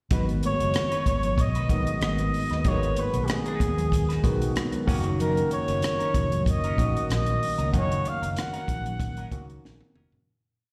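Lush 1970s-style soul with a smooth, bittersweet mood, this short piece moves at an easy mid-tempo with a light sixteenth-note swing, sitting on a G#m7 chord before shifting to F#6 around 4.9 seconds. A breathy flugelhorn carries the melody up front with vibrato and a soft attack, its whispered, intimate tone shaped into hook-like motif phrases and touched by slapback echo, until it drops out at 9.6 seconds. Beneath it, a barky tine electric piano pushes drop-2 chord voicings with grace notes, lightly overdriven through a combo amp with phaser and slapback echo, while a clean semi-hollow electric guitar ticks out a soft sixteenth-note wah riff in the background. A dark, foam-muted fingered bass plays a round, punchy melodic line, and a compact cocktail kit with a high-tuned snare and punchy kick holds a dry, up-front groove alongside very quiet, high-tuned congas playing a syncopated pattern from a distance. 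The whole performance sounds like a live gig heard through a venue's PA in a reverberant recital hall, fading out from 7.7 seconds as the drums close with a fill.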